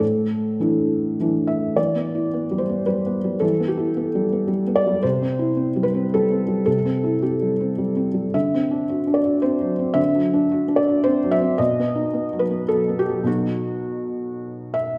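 Wistful and intimate, this short passage of neoclassical minimalist piano unfolds in E minor at a loose, rubato pace of roughly 101-112 BPM in 3/4 time. A felt-muted upright piano plays alone throughout the 15.0 seconds, ranging from A2 to E5, its tone soft, mellow and warm, sitting up front and close to the ear. The opening Asus4 gives way at 1.8 seconds to a longer stretch that moves through Em, C and D7 before settling on B. The instrument is tuned slightly below standard pitch, with A4 at 436 Hz. A lush recital hall reverb, as in a church or concert hall, wraps the piano in a gentle halo of space, and the passage is cut from a longer piece.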